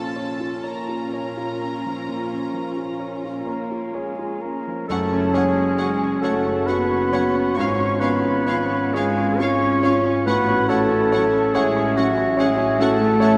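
A warm concert grand piano with long sustain carries the tragic, brooding melody of this romantic movement for piano and orchestra in a rubato 12/8, over soft, sul tasto violins, woody viola and double bass sections, and floating cellos, with a clear clarinet and hollow flute joining at 3.5 s, a mellow bassoon and very quiet tuba at 4.9 s, and dim, dark French horns sustaining chords from 5.8 s, all bathed in a wet church reverb.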